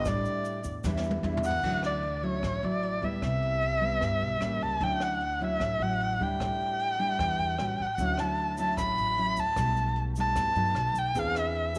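A moderate echo-chamber reverb and studio ambience give this breezy, sophisticated bossa nova excerpt an airy sense of space at 151 BPM in D major, straight 4/4 time. Up front, a single bowed erhu carries the melody in its upper register with expressive vibrato and portamento, opening with a brief solo spot. A drum fill closes it at 1.6 seconds, and the tune moves into its longer second section over lush chords such as Dmaj9, A7b9 and B7b13. Beside the erhu, a full-bodied, fingerpicked nylon-string guitar with fresh strings, a deep classical tone and audible finger squeak provides the accompaniment. A woody, thumpy pizzicato upright bass on gut strings anchors the low end. In the background, a dark, smooth brush kit with dark cymbals, a high-tuned snare and a boomy kick keeps time, while a grainy, bright tube shaker appears at the start and returns from 8.0 seconds.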